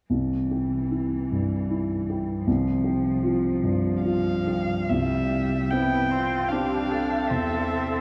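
In triple metre with uneven, rubato beats, this serene passage from a slow romantic movement for piano quartet opens with a dark, mellow grand piano up front and a veiled, con sordino cello carrying a soft-attack second line with vibrato. A bowed violin, also muted, enters at 4.0 seconds with a smooth-topped melody touched by portamento, and a distant viola joins the accompaniment at 4.9 seconds. The quartet sits in a vast, echoing cathedral with a long, wet reverb.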